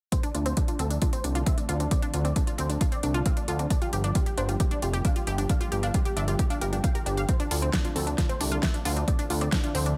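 A punchy electronic kick sits up front in this driving, bittersweet uplifting trance excerpt at 134 BPM in D minor, joined by a layered big-room kit with a huge snare and overdriven metallic hats, a fat, nasal, saturated analog bass entering at 0.3 s with sidechain pumping, a detuned supersaw stab melody through low-pass filtering and dub echo, a lush, warbling unison pluck arpeggiating with its own pumping and echo, and a very quiet, silky string pad with phaser and ensemble chorus, all moving over Dm7 and Gm7.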